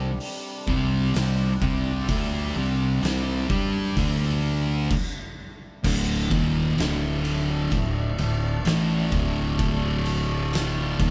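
Stoner and doom metal with an ominous, heavy mood, cut from a longer piece and played by a band in one room with light reverb. Two picked fuzz guitars, one murky and set back and the other warm, grind through a riff over C5 and D5 chords with an overdriven, round fingered bass, while an oversized low-tuned acoustic kit enters at 0.2 seconds, up front with a punchy kick, fat snare, dark cymbals and a gritty, pumping stone-room sound. Beneath them, a resonant sawtooth, sine and triangle drone sustains chords with moving overtones, chorus and its own reverb, and after a stop from 4.9 to 5.8 seconds the music lands on a Dm chord.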